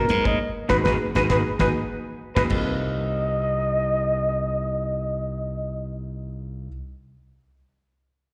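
A lightly swung sixteenth-note groove at 100 BPM in 4/4 drives this short, nocturnal slice of electric jazz fusion in C minor, cut from a longer piece. Up front, a veiled, bucket-muted trumpet carries the melody with vibrato and scooped notes, its line doubled by slapback and tape echo, while a bright, growly slap bass punches beneath it. A damped 70s drum kit with a fat snare, tight kick and dark cymbals plays from 0.1 to 2.7 seconds, alongside high-tuned congas with thick skins set in the background. A clean, hollow-body electric guitar adds chorus-lush stabs, and a mellow, shadowy grand piano sits behind the band with its own fill near 1.6 seconds. A drum fill and a band accent land together early on, and the harmony moves from Ab7(no3) to Cm7 at 2.5 seconds, just before the second section begins at 2.8 seconds. The whole performance comes across as a live gig heard through the venue's PA, framed by recital hall reverb.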